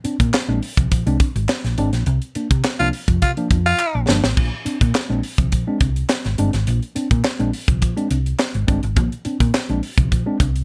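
Funk at 104 BPM in a straight 4/4, this short, strutting and playful clip is cut from a longer piece. A mellow tine electric piano plays clean, direct stabs over Bb9 and C9sus4 chords. A hollow-body, short-scale fingered electric bass sits up front with a dark, round, amped tone. A crisp fusion drum kit with a punchy kick, high-tuned snare, hi-hat and crash sounds airy and polished, while a group handclap stays in the background from a small room. The band hits an accent from 2.1 seconds, where a raspy, gritty baritone saxophone with light vibrato steps forward at 2.8 seconds on a single F4, and a drum fill arrives at 3.8 seconds. The mix is dry, with very little reverb.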